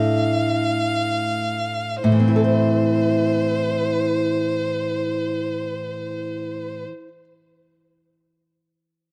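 A solemn, yearning romantic duo fragment in which a rich, focused bowed violin sings a vibrato-laden melody up front over a bright, small-bodied nylon-string guitar fingerpicked with fresh strings, the music slowing through its opening 2.0 seconds as the harmony moves from Dm/A to Am, before the guitar rings on alone after the violin stops at 6.8 seconds, all captured in a dry, close 1970s-style studio sound.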